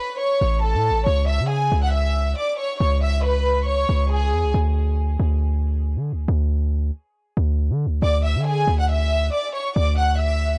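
A half-time 4/4 pulse at 138 BPM carries this wistful yet triumphant trap-style hip hop excerpt, where a punchy, heavy 808-style bass, a fast-attack, decaying sine tone with a noise layer, sits up front from 0.4 seconds, while an intimate, close violin section bows the melody sul tasto with light vibrato and analog delay, dropping out at 4.5 seconds and returning at 8.0 seconds over chords moving from A to C#m to Dsus2, captured as a dry, gritty hardware recording in a small room and tuned to A4 = 441 Hz.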